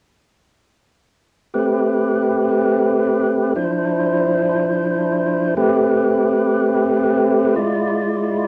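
A home cassette recording with a small room's ambience and a moderate, short reverb frames this brief blues fragment. It is a mournful, smoky piece in a slow 12/8 with a straight feel, cut from a longer performance. A tonewheel organ is the only part, entering at 1.5 seconds and holding sustained chords up front through to 8.5 seconds. Its tone is fat and clean, with vibrato, an audible key click and a slow rotary speaker. The harmony moves from Am9 to Dm9, back to Am9, and lands on a tense E7b9 at 7.6 seconds.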